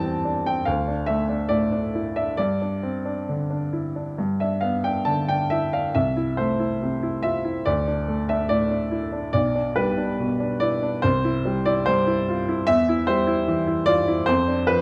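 Classical romantic character piece for solo piano, warm and lyrical in mood, where a clear, natural-sounding baby grand with short sustain sits up front under close, detailed microphones and light reverb, moving in flexible rubato through a gently shifting chord sequence across this brief 14.8-second excerpt cut from a longer work.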